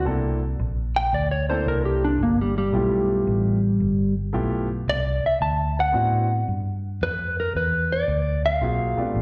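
Swung eighths in 4/4 drive this rollicking, gritty blues fragment, where a mellow, dark, compressed electric guitar with lush chorus and slapback echo plays a clean solo until 6.5 seconds, backed by a warm concert grand piano with its own slapback echo and a round, foam-muted vintage electric bass up front, the trio heard as a live gig through the venue's PA in recital hall reverb over thirteenth chords.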